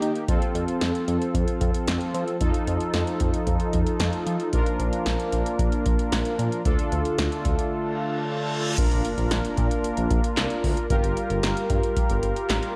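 Synth-pop at 113 BPM with a cool, nocturnal mood: a punchy electro analog drum machine with a deep kick, metallic hats and gated reverb drives bold, fat, detuned synth brass with a filter sweep, a warbling vintage pad and a smooth, nasal synth bass through F, F7, Bb, Dm and Gm7, with a break at 7.7 seconds where a reverse cymbal rises into an electronic impact at 8.8 seconds in this piece cut from a longer track.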